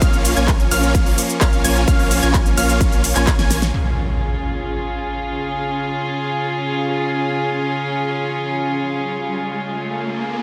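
Festival progressive house at 129 BPM in Db major, anthemic and triumphant, opening mid-drop on Bbm with a punchy, up-front electronic kick, a tape-warm pop kit of fat snare, crisp filtered hats, handclaps, ride, shaker and a drum fill, a deep saturated sub bass, huge detuned supersaw chords through cassette tape, low-pass filter and dub echo, and a bright background pluck arpeggio with dub echo, the tonal parts all pumping against the kick, before everything but a reedy, gut-string studio string section falls away by 3.7 seconds for an electronic impact, a sustained Db chord and a riser from 8.6 seconds, in a dense, heavily limited, dry mix.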